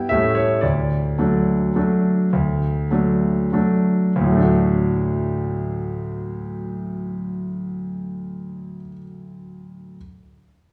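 A lilting waltz in three with a free, rubato feel, this classical solo piano fragment is graceful and playful, and it is cut from a longer piece. The opening phrase slows as it unfolds over its first 4.2 seconds, settling from an A7 chord onto D, before a contrasting section runs until 7.9 seconds. The grand piano, tuned to A4 = 437 Hz, is clear and natural with a short sustain. It sits up front and ranges from D2 up to E5. Around it, a wet recital hall reverb with a 1.5-second decay gives the impression of being heard from further back in the room, with a touch of small room ambience.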